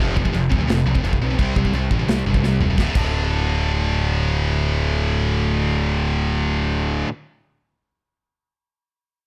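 A scooped, high-gain guitar riff and a fuzz-laden picked electric bass open this relentless, epic heavy metal excerpt together, driving at 172 BPM in a straight 4/4 in D minor. The double-tracked guitar sits up front with bright, distorted bite, ranging from D2 to C4, while the overdriven bass punches beneath it from D1 to D2 with a direct, amped sound. An acoustic drum kit joins at 0.2 seconds with a tight kick, a medium-tuned snare, toms, and crash and china cymbals, its small-room sound airy and polished. A drum fill leads into a new section at 2.8 seconds, where the harmony moves from F5 and C5 to D5. The drums stop soon after, and guitar and bass carry on alone until about 7 seconds. The production is dark and dry, with little reverb.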